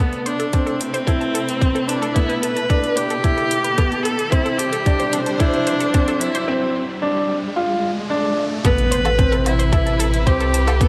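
A solo viola with vibrato carries the melody up front over a lush, distant string section, a clear concert grand piano riff and a bright, detuned sawtooth pluck arpeggiating in the background, while overdriven electronic hi-hat and woodblock and a tight, tape-warm kick drive this moving, hypnotic piano-and-strings electronica in A minor at 111 BPM, as a riser from 2.4 s builds through a break to a drop at 8.6 s, where an impact lands and a round sine sub bass joins, all within a lush hall reverb and a recording bearing lossy compression artefacts.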